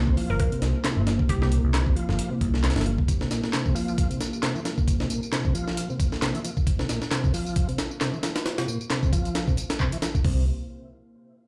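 Played on a big sound system in a bare room, this gritty, funky breakbeat excerpt carries a large studio reverb over a moderate small-room ambience. It moves at 134 BPM in 4/4 with a 56% swing on the sixteenths, tuned to A4 = 438 Hz and opening on a C7 chord. A compressed, pitched-up, tape-warm sampler-style breakbeat kit sits up front with a thumpy kick, high-tuned snare and hi-hat, joined from 0.8 seconds by dry, analog electronic handclaps and tambourine. An overdriven, growly picked electric bass punches through tube saturation until 3.0 seconds, then returns briefly near the end. A smooth tonewheel organ riff spins through a fast rotary speaker and chorus vibrato, roughened by 12-bit sampler grit, low-pass filtering, delay and a filter sweep. Beneath it a deep, moody analog pad of detuned sawtooth and triangle waves holds sustained chords with sidechain pumping and its own filter sweep, while a hollow, bouncy square-wave pluck flickers through an AM-radio tone, chorus and delay in the opening seconds.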